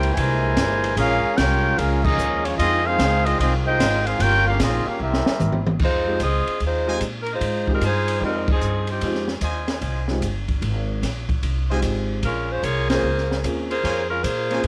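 A swung 4/4 at 149 BPM drives this big band swing excerpt in F minor, cut from a longer piece, with a dramatic, sultry mood. A woody, pizzicato upright bass sits up front throughout, and an open jazz drum kit plays across the whole passage, its dark cymbals, high-tuned snare and boomy kick heard in a small room with a cassette-tape tint. At the start, a mellow trumpet section with smooth top and light vibrato carries the melody, a dark trombone section adds a second line in the background, and a distant, very quiet bright trombone section holds sustained chords. The band hits accents at 2.0, 8.4 and 12.8 seconds, and a drum fill at 5.0 seconds leads into a new section at 5.8 seconds, where an edgy, tight saxophone section takes the melody. A worn baby grand piano comes in for accompaniment at 6.1 seconds, and a close-miked bright trumpet section punches out stabs, all under light reverb with the hazy character of a home cassette recording.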